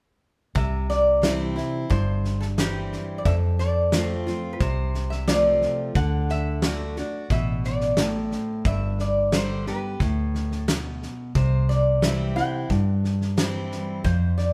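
A heartfelt, nostalgic honky-tonk and classic country passage, cut from a longer piece, captured as a band playing live in one room with a moderate stone-room reverb. A metallic, nasal lap resonator guitar carries the melody with fingerpicks and slide over a bright, full-bodied picked dreadnought acoustic up front, a dark, round foam-muted electric bass, and a natural drum kit with a fat snare, punchy kick and hi-hat. All four play throughout in a straight 4/4, moving from C through F, D and G before returning to C at 11.3 seconds.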